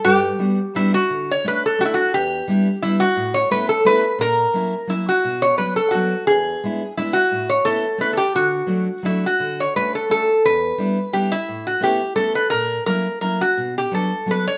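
A metal-body resonator slide guitar, played with fingerpicks, carries the melody up front with a bright, metallic, nasal voice, while a warm, fingerpicked auditorium steel-string acoustic guitar supports it from the lower register. This is a nostalgic, charming musette waltz in D major at 173 BPM in 3/4, with a lightly swung, rubato feel and moderate studio reverb. Cut from a longer piece, it moves through chords such as Dmaj7, Em7, Aadd9, F#7/A# and Bm, with the progression starting over at 9.4 seconds before both guitars stop around 14.6 seconds.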